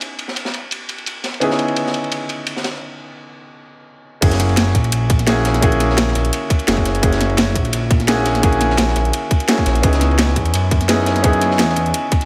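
Liquid drum and bass at 171 BPM with a dreamy, soulful mood, this excerpt opens on an up-front grand piano with dub echo over C#m7, backed by two drum kits: a dark, gritty breakbeat kit with a high-tuned snare and ride cymbal, and an overdriven, layered electronic kit with a cracking snare, bright hats and crash cymbal. After a break from 2.8 seconds, the drop arrives at 4.2 seconds, bringing in a tight, overdriven electronic kick and a smooth sawtooth and square-wave synth bass with a moving notch and fast attack, as the harmony shifts to F#7. The chords return to C#m7 at 9.8 seconds, all set in a light, small-room reverb.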